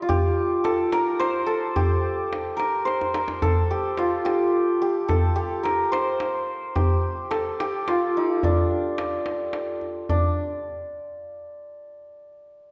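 A shimmering, hammered santur carries the melody from the opening moment, its ringing notes moving between D4 and C5 close to the listener. This hypnotic, soulful fragment of a longer Persian modal ensemble piece moves at 72 BPM in a straight 6/8, counted in dotted quarters. The tombak sits just as near, with a tight, compressed and saturated tone, and breaks into a short fill at 2.9 seconds. A new section begins at 10.1 seconds, and the tombak falls away at 10.4 seconds, leaving the santur to ring on by itself. A wet scoring-stage reverb lends the pair a long, spacious tail.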